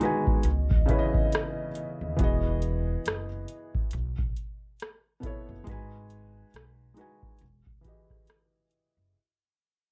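A felt-muted upright piano, soft and intimate with audible action noise and plate reverb, opens this dreamy, nostalgic lo-fi hip hop fragment alongside a booming analog drum machine whose deep kick, metallic hats and rim clicks sit up front with a swung, tape-warm feel, while a dark, detuned, nasal pad with chorus hovers in the background until 2.2 s. A woody pizzicato upright bass joins at 0.4 s beneath mellow chords moving from C#m9 through Emaj9, B7sus4 and G#m7 back to Emaj9. The whole passage is a fade-out, bathed in light reverb and cassette-tape colour.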